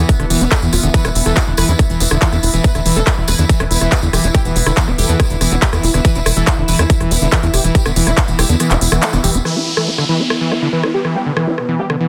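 Driving and hypnotic, this 141 BPM psychedelic trance excerpt drops in on a punchy, overdriven kick and crisp-hatted dance kit with handclaps, rim clicks and a jingly acoustic tambourine, under a tight sequencer bass, a squelchy, gritty acid bass riff, a thick detuned unison lead with phaser and dub echo, a very quiet formant-sweep wobble bass, a resonant overtone-sweeping drone and a deep, moody pad. The lead, acid bass, drone and pad pump against the kick until it drops out at 8.6 seconds, followed by a band accent at 9.0 seconds and, from 9.5 seconds, a downlifter while filter sweeps move across the acid bass and drone.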